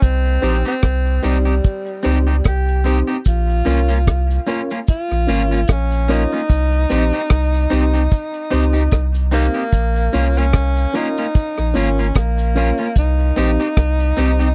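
A breathy tenor saxophone carries the melody in this laid-back, hypnotic roots reggae excerpt, its whispered, intimate tone marked by vibrato, scooped notes and a smooth top, with a dub echo trailing its lines. Underneath, a deep, round sub bass sits up front with the dry, acoustic drum kit, whose tight kick, hi-hat and rim click hold a relaxed 74 BPM groove in 4/4 with a light swing on the sixteenths. From 0.4 s, a twangy, fingered electric guitar at the edge of break-up adds quiet accompaniment, also sent through dub echo, while a dark upright piano drops in mellow, woody stabs with audible action noise and long sustain. A vintage, band-limited cabasa enters softly in the background at 3.3 s. The harmony rocks between C minor and B-flat minor, and the whole piece has the dry, close feel of a 1970s studio with little reverb.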